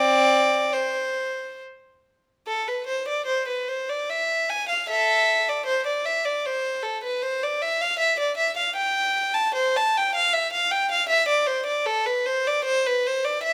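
A lone bowed violin, played up front in period style with a rich, reedy gut-string tone, carries this radiant, flowing fragment of a baroque-style suite movement in an unhurried, rubato three-time, its close sound bathed in the moderate reverb of a large studio.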